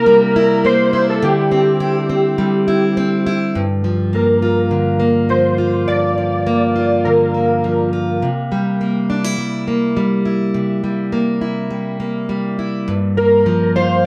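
A straight 4/4 pulse at 103 BPM carries this wistful, mellow indie pop in G dorian, where a bright, parlour-toned picked steel-string acoustic guitar with fresh strings sits up front throughout, treated with lush chorus and a warbly pitch drift, beneath a nostalgic, detuned lo-fi synth keys melody of pulse and sawtooth tones with ensemble chorus and tape echo that plays from the start until 7.9 seconds and returns at 13.2 seconds, all in a moderate studio reverb over chords moving from C7 and D9sus4 to Gm7.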